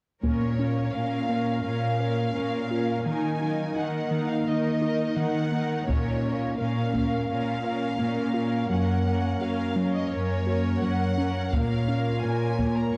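A cinematic hybrid of orchestral and electronic film score in Bb minor at 85 BPM, vast and relentless in mood, cut from a longer piece. Lush, distant violins carry the melody over a smooth viola section and a clear, intense, up-front cello bass, while a harp-like synth pluck rings softly in the background with a moving notch filter and a hollow, flute-like pad sustains chords with chorus. A compressed, saturated taiko ensemble strikes with hard sticks in short bursts starting at 0.2, 5.9 and 11.5 seconds, all set in a dark production with a scoring stage reverb.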